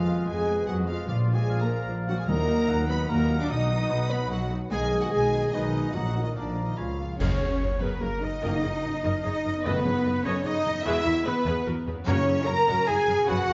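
A heroic adventure film cue in a brisk 3/4 at 148 BPM, soaring and adventurous, where lush bowed violins carry the melody over mellow French horn and bright trombone chords, rich double basses and expressive cellos, a quiet viola accompaniment, ringing harp arpeggios, and dark, distant trumpet stabs, while airy flute, clear clarinet, a second violin part and a mellow oboe (until 7.0 s) weave quiet secondary lines. The harmony moves from Eb harmonic minor into a brighter F# mixolydian at 7.2 s, marked by a full-ensemble accent with an up-front crash of dark cymbals and bass drum, and round soft-mallet timpani enter at 1.1 s and again later. The sound sits in a moderate scoring-stage reverb with a gently rolled-off top, and this is a fragment of a longer piece.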